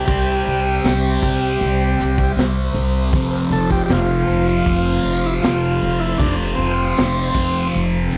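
A thick, double-tracked fuzz guitar riff opens this hypnotic psychedelic rock excerpt, its bright, phaser-tinted distortion sitting up front alongside a buzzy vintage combo organ melody with light vibrato and a slapback echo. From the start, a pizzicato upright bass adds a woody, thumpy low end on gut strings, while a dark symphonic string section holds lush, bowed chords in the background with an expressive, smooth top. A raw garage drum kit joins at 0.1 s with hi-hat, a punchy kick and a high-tuned snare, its small-room sound saturated and gritty with a rolled-off top. The trippy groove moves at a straight 78 BPM in 4/4, shifting from C to F at 3.1 s, and the organ drops out at 7.7 s as the other parts carry on to 8.2 s. The dry, close 1970s-style studio sound has little reverb, keeping every part intimate and direct.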